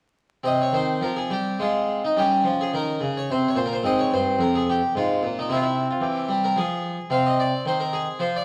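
Flowing and radiant, this short excerpt from a baroque-style suite movement sets a solo harpsichord in triple metre at 108 BPM, played with a free, rubato feel in Ab major. The French-style instrument, with its three sets of strings, sounds plucked, full and brilliant, sitting up front and mid-forward as it spans from F2 up to F5 between 0.4 and 8.4 seconds. Its harmony moves from Ab over C through Eb7, Bb minor with an added ninth, F minor and C, pausing briefly on an unharmonized moment before settling on C minor eleventh. A wet recital hall reverb surrounds the playing, while the recording carries the character of worn, warbling old cassette tape, with vinyl crackle and a wavering pitch drift. Tuned slightly low to A4 = 438 Hz, the fragment feels like a memory of a baroque suite heard through aged media.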